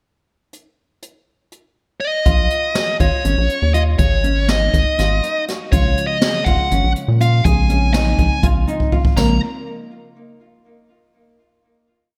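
Intricate and driving, this short progressive instrumental piece moves in 7/8 at 243 BPM in Bb minor, opening with a jazz brush drum kit (dark cymbals, a high-tuned snare and a boomy kick) playing a pickup, joined by the lead guitar at 2.0 seconds before the rest of the band enters at 2.3 seconds over Bbm7, Ab7sus4 and Bbm9 chords. A rubbery, hollow square bass sits up front with a syncopated riff, a woody, fingerpicked nylon-string guitar repeats an ostinato through delay, and a dark, overdriven lead guitar carries an arching motif-based melody. A mellow tine electric piano adds held rootless chords from 5.7 seconds, and a drum fill at 8.8 seconds leads into a final chord, all set in a small room with light reverb.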